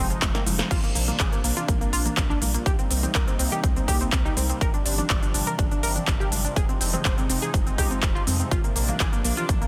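Emotional and bittersweet, this short progressive house excerpt opens with a brief drum fill as a punchy, up-front electronic kick and big-room dance kit of crisp hats, snare, handclaps, shaker and crash drive beneath a deep, thick sub bass, a tight, detuned sawtooth arpeggio with tape echo, a lush, airy pad moving through Fm7, Bbadd9, Cm7 and G7sus4 with chorus and phaser, and soft-handed congas and bongos in the background, the synths, bass and hand percussion pumping against the beat in a dense, heavily limited, nearly dry mix.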